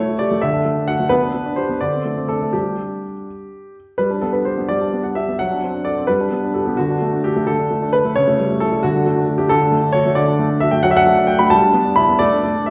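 Graceful and playful, this short passage from a classical-period piano sonatina moves in a lilting 6/8 with a flexible, rubato feel. A solo grand piano carries the whole piece, its tone intimate and natural, sitting up front with the soft clatter of its action audible beneath the notes. The opening phrase returns at 4.0 seconds, and from 9.5 seconds the music settles into a new key, its harmony moving through chords such as D/F# and Em7/G before the cut. The piano ranges from C#3 up to B5. A wet recital hall reverb surrounds the instrument, and the listener seems placed further back in the room, so the close, detailed piano tone blooms into a resonant, airy space.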